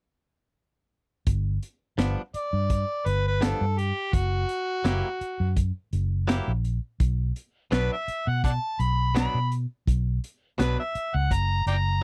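An overdriven harmonica carries the melody up front, its amplified, gritty tone studded with tongue slaps in a pop-style solo that enters at 2.4 seconds and rides to the end. This brooding, soulful straight-eighth soul blues sits at 84 BPM in 4/4 with a light sixteenth-note swing, set in B harmonic minor and tuned slightly flat of standard pitch. Beneath it, a crunchy breakbeat kit of kick, snare and hi-hat sounds saturated and dark, with a punchy kick, a high-tuned snare and a rolled-off top, while a vintage muted fingered bass gives a round, foam-muted, amped low end; both start together at 1.3 seconds. A direct-recorded clean electric guitar adds bright, twangy, compressed picked stabs, sitting lower in the mix than the other parts. The chords move from G7 to F#7b9 and settle on Bm before landing on F#, all captured as a dry, close 1970s-style studio recording cut from a longer piece.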